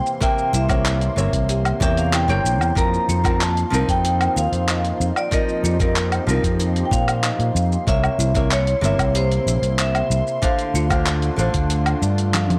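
A hard-mallet vibraphone carries the melody from the start with a metallic, ringing tone and fast motor vibrato, over a bright, fingerpicked flamenco guitar with audible finger squeak. Both are touched by analog delay, while a lush, detuned unison pad with chorus and phaser sits in the background. This smooth sunset chillout excerpt rides on a dusty, gritty soul drum kit of handclaps, hi-hat, shaker, toms and woodblock, a thumpy electronic kick, a woody kalimba playing delayed arpeggios, and a growly, up-front fretless bass, in a dry hardware recording with digital ambience; the kick drops out at 11.7 seconds and a drum fill arrives at 12.3 seconds as the chords move from C7b9 through F7sus4 to Dm7.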